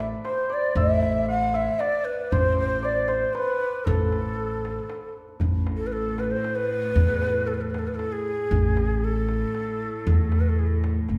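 Longing and soulful, this Persian modal ensemble piece in A avaz esfahan moves at 116 BPM in a straight 3/4, with a breathy, end-blown ney carrying the melody up front over a woody, growly pizzicato upright bass, a tight tombak set in the background, and a shimmering hammered santur ringing as a second line until 6.8 seconds, while a distant, floating sul tasto cello section enters at 5.4 seconds to hold a pure drone on A2, the ensemble heard in a resonant recital hall.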